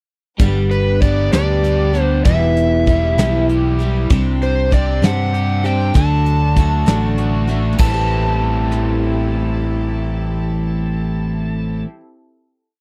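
A dry, close 1970s-style studio sound with light reverb frames this short, reflective folk rock and heartland rock piece in a straight 6/8, moving through a pre-chorus over G, Em, Csus2 and D to a final Am7 chord at 7.8 seconds. A shimmering, octave-doubled twelve-string acoustic guitar strums open chord shapes in eighths, and a crunchy, double-tracked overdriven electric guitar picks arpeggios. A round, dark fingered bass plays a dotted figure up front beside a soft brush kit with a punchy kick, which stops at 8.9 seconds, while an overdriven slide guitar played with fingerpicks sings wistful, song-like motifs over a very quiet, earthy chamber string section holding chords with swells and changing inversions.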